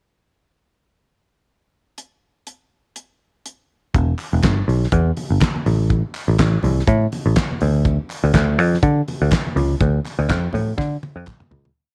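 A driving, danceable disco piece at 123 BPM in D dorian, swung on the sixteenths, opening with a short pickup bar from a damped 70s drum kit that plays a dry, up-front four-on-the-floor beat with open hats on the off-beats, a tight kick and a fat snare layered with clap. At 3.9 seconds a breakdown begins as a dark, foam-muted picked electric bass enters with a round, syncopated line full of chromatic approach notes, joined by very quiet, distant low-tuned congas slapping on two and ringing open on four, and at 4.2 seconds by a faint group handclap on the backbeat. Under light studio reverb the track fades out from 9.8 seconds, closing on a drum fill that ends at 11.8 seconds.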